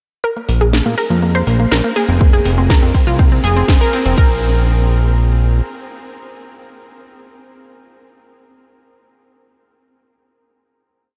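A straight 4/4 pulse at 122 BPM drives this short, dreamy progressive house piece, where a warbling vintage analog pluck spins a sixteenth-note riff over a pedal note through chorus, delay and sidechain pumping while a filter sweep opens it across the build-up, a fat detuned sawtooth bass pumps in a dotted rhythm, a house kit adds a cracking snare along with metallic hats and a crash that pump with the sidechain, and a punchy four-on-the-floor electronic kick joins at 2.2 seconds before the build gives way at 4.2 seconds to a final chord ringing until 8.1 seconds in a huge, soft-topped ambient reverb.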